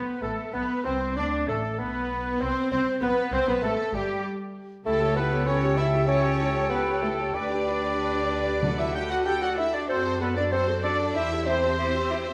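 A lively, graceful excerpt of a quick classical-period movement for symphony orchestra opens at 96 BPM in 4/4, with a very quiet, lush violin section carrying the melody over a second violin line, a rich viola section and background cellos and bowed double basses, the harmony moving from A minor toward D and C. Airy flute, clear oboe, a very quiet clarinet and a dark bassoon weave second lines and accompaniment while a French horn section holds sustained chords and a warm trumpet adds stabs. Round, soft-mallet timpani sound briefly from 8.6 s, all in a wet recital hall.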